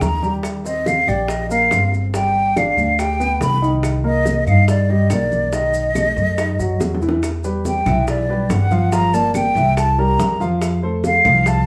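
A breathy concert flute carries the melody up front in this driving, sultry Afro-Cuban jazz passage, cut from a longer piece in a straight 4/4 feel. Its expressive line has vibrato, tongued notes and lifted highs, set in plate reverb. Beneath it, a warm concert grand piano accompanies with an intimate, natural sound, deep bass and audible action noise. A thumpy upright bass sits up front, plucked pizzicato on steel strings with a woody, bright edge. The percussion is layered: tight, high-tuned bongos played with soft hands, thick-skinned, medium-tuned congas in the background, grainy, mellow maracas close by, and dry claves that join at 0.4 s. A drum fill at 6.8 s leads into a new section at 7.2 s, where the harmony moves through Em9, Gm7 and C7 to F, and the recording carries a light small-room ambience.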